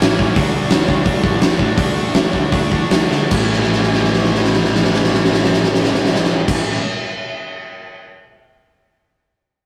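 A punk rock excerpt in A major opens with two distorted electric guitars, a fuzz-laden picked bass and a big acoustic drum kit with a fat snare and punchy kick, the tempo sitting between 147 and 173 BPM and slowing down early on as the riff moves from D to A. A dark, overdriven guitar sits in the background while a tight, bright guitar and a punchy bass drive the energetic, rebellious charge, with drum fills at 3.1 seconds and again through the second half. After the bass drops out at 6.5 seconds and the guitars near 6.9 seconds, the up-front drums carry on alone until 8.0 seconds in this rough rehearsal-room recording with light reverb.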